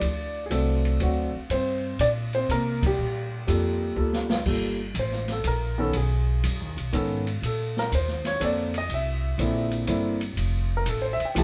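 Recorded live in one room with moderate studio reverb, this cool, moody jazz piano trio excerpt in G minor swings at 122 BPM in 3/4, with an intimate, up-front concert grand showing audible action noise and deep bass, a woody pizzicato upright bass, and an open drum kit with dark cymbals and a boomy kick, hitting a band accent at 2.7 seconds before a drum fill at 4.0 seconds leads into a grand piano solo from 4.5 seconds over chords moving from D7 through Gm9, Bbmaj9 and C9 to F.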